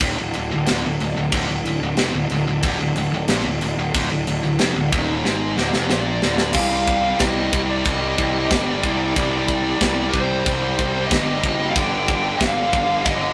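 A straight 4/4 pulse from a tight, polished metal drum kit, with china and crash cymbals over a tight kick and snare, drives this epic, heavy metal excerpt, while a double-tracked, bright high-gain riff guitar and a growly fuzz bass sit up front in a rough rehearsal-room sound with light reverb. During a drum fill that begins at 5.3 s, a dark, distorted lead guitar with digital delay enters at 5.9 s, carrying a high melody as the harmony shifts from D minor to C minor at 6.6 s before landing on a G power chord.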